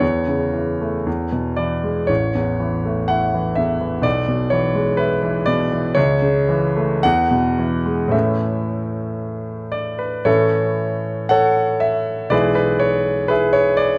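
The recording places a brilliant concert grand piano up front, its deep bass and natural tone carried by a moderate recital hall reverb. This short extract from a longer romantic character piece for solo piano sits in A major at a slow 54-64 BPM in 2/4, with a flexible rubato feel. The mood is warm and passionate, and the piano alone spans from A1 up to F#5. The harmony moves between A and E chords, with inversions such as E over B and A over C# colouring the line. At 10.3 s the opening section begins again and carries on until the extract breaks off at 14.0 s.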